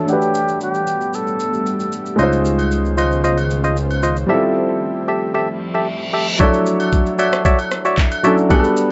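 A straight 4/4 groove from a smooth R&B drum kit, with a knocking kick, handclaps, rim click and shaker carrying gritty 12-bit sampler character, anchors this soulful, relaxed amapiano fragment, where a pure, distant silver concert flute sings a brief opening phrase over an intimate baby grand piano with audible action noise and an ethereal, airy pad under a filter sweep and sidechain pumping, while a downlifter and reverse cymbal mark the transitions, a hollow, percussive organ stab and a fat, saturated analog bass arrive at 2.2 seconds alongside distant agogo bells, and the dry, gritty recording keeps the top end dark.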